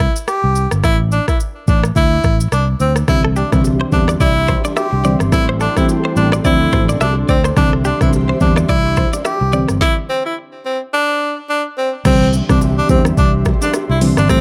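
A swung sixteenth-note afrobeats groove drives this joyful, sunny clip, cut from a longer piece, with an electronic, produced drum kit up front: deep kick, woody snare, metallic hats, rim clicks, shaker and crash, all with a tape-warm tone. A punchy, amped fingered electric bass sits under the kit, and a bright, jazz-style tenor saxophone carries the solo melody up front with a touch of delay. From about 3.1 seconds the arrangement fills out with a soft, round synth pluck with a dark, decaying edge and chorus, very quiet congas and bongos played with hard hands in a distant large room, and an airy, breathy pad holding mellow chords in the background. A twangy, clean, direct-recorded electric guitar adds a scooped, compressed riff with tremolo and delay until the band drops into a stop at 9.8 seconds. At 12.1 seconds a new section opens on a Cadd9 chord, after a progression that earlier moves through Cadd9, Am7 and Dm7, all within a dry mix.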